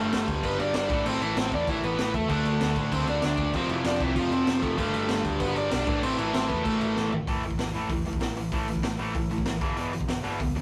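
Raw and aggressive, this punk rock excerpt opens with an up-front overdriven guitar carrying the melody over a picked distorted guitar riff, a very quiet double-tracked sludgy guitar, and a dark, round hollow-body short-scale bass. A gritty garage drum kit with a high-tuned snare, punchy kick and rolled-off top drives the rough rehearsal-room sound, lightly reverberant and saturated, while a bright, tight distorted guitar slips in very quietly at 2.3 seconds. As a drum fill rolls in at 7.0 seconds, the melody and sludgy guitar stop at 7.1 seconds, leaving the riffing guitars, bass and drums to push on toward a closing Em/G.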